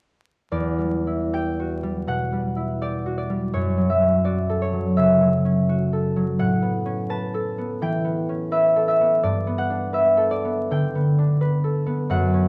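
A dark, warm recording with vinyl crackle places a single concert harp up front in a moderate recital hall, its 1.7-second reverb lending the ringing strings a gentle halo. This is a classical solo harp piece, cut from a longer work, with a gentle, mysterious mood in E dorian and a tuning of A4 = 439 Hz. The harp plays alone from 0.5 to 12.5 seconds, fingerpicked across a range from E2 to A5, with a free, rubato feel in 4/4 at roughly 69-88 BPM. The harmony moves through Em9, F#m7 and A13 before settling on Gadd9 at 9.2 seconds. The acoustic tone and the hall's lingering resonance give the brief passage an intimate, dreamlike quality.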